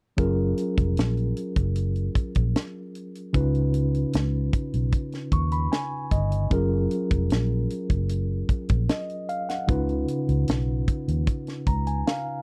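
A mellow tine electric piano accompanies this lush 1970s-style soul excerpt, its clean, direct tone sitting up front and breaking into short fills at 4.9 and 11.3 seconds. The mood is warm and romantic, moving at an unhurried 76 BPM in a straight 4/4 feel in F# major. Underneath, a vintage muted fingered electric bass gives a dark, round, punchy foundation with an amped, foam-muted character. A tight funk drum kit of hi-hat, kick drum and high-tuned snare sounds natural and acoustic, as if set in a small room, with a tight kick placed close to the listener. The harmony alternates between F#maj7 and C#7, and the dry, close studio sound keeps every part intimate and present throughout this brief passage cut from a longer piece.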